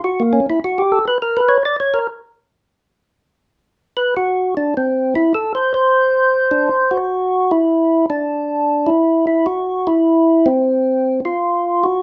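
A percussive tonewheel organ plays alone and up front for the whole 12 seconds of this swinging, soulful jazz clip at 102 BPM, its fat, lightly overdriven tone marked by key click and third-harmonic percussion and turned by a slow rotary speaker in a small, moderately reverberant room, with a shift to a new section at 7.1 seconds.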